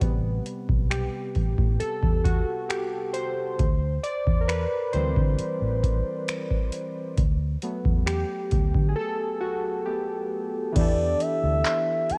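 A booming analog drum machine sets a slow, straight pulse in four, its deep kick, metallic hats, finger snaps, handclaps and crash cymbal sitting up front with a tape-softened edge. This moody, late-night slice of contemporary R&B, cut from a longer piece, is anchored by a vintage fingered electric bass that sounds dark, round and punchy, with a foam-muted thump. Warbling analog keys built from detuned pulse and sawtooth waves carry the harmony through Am9, D7sus4 and Gmaj7/D, their fast attack and decaying tone thickened by chorus and a cassette wobble, and they hold a solo feature through the opening stretch with a break from 9.0 seconds. At 10.8 seconds a smooth gliding lead arrives over Em11, blending sawtooth, sine and triangle tones with a soft attack, vibrato, portamento and chorus. The whole clip has the hazy character of a home cassette recording set in a digital ambience.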